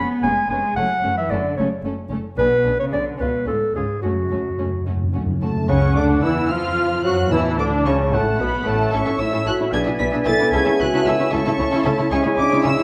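Con sordino violin sections carry the melody and an inner line over veiled violas, cellos and double basses while a smooth clarinet adds its own line in this lively, cheerful classical-period symphonic movement in F# minor, cut from a longer piece and moving at 74 BPM in a quick 6/8, with very quiet timpani entering at 4.0 s for a fill, mellow French horns sustaining chords from 5.4 s, and an airy flute ensemble, a distant cor anglais and a bassoon joining at 5.7 s for the second section, heard in a reverberant recital hall.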